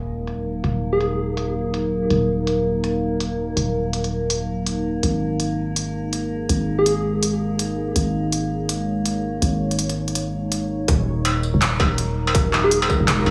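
The sound is heavy and dark, set in a lush hall reverb with a small-room ambience around it, in a half-time drum and bass cut from a longer piece at 164 BPM in Eb minor with a swung sixteenth feel. A very quiet electronic sub drop marks the opening impact at 0.0 seconds, as a growling, buzzy 808-style bass sits up front on low Eb and Ab notes and a deep, moody ambient pad holds detuned, wave-folded chords, pumping under sidechain and bathed in chorus and its own reverb. An eerie, nasal metallic drone hovers on Bb amid the Ebm and Ab5 harmony, while an overdriven industrial kit of handclaps, crisp filtered hats, struck metal and tambourine drives the groove from close range. A round, gentle keys-like lead strikes three brief, warbling Ab notes with a vintage tape echo. At 10.9 seconds the drone falls away and a distorted electronic kick enters for the drop, the chords returning to Ebm.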